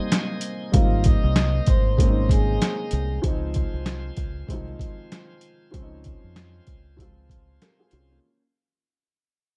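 Dark, dry, vinyl-crackled production frames this soulful, confident boom-bap hip-hop excerpt at 96 BPM with swung 16ths, fading out throughout as a gritty, pitched-down sampler drum kit with a thumpy kick sits up front over a round, punchy fingered electric bass. A boxy, short-sustained baby grand piano through cassette tape accompanies the change from Abmaj7 to Dbmaj7, a lightly overdriven tonewheel organ with key click and slow rotary speaker holds bright chords lower in the mix, and a metallic, ringing soft-mallet vibraphone with digital delay carries the melody from 0.7 to 3.2 seconds.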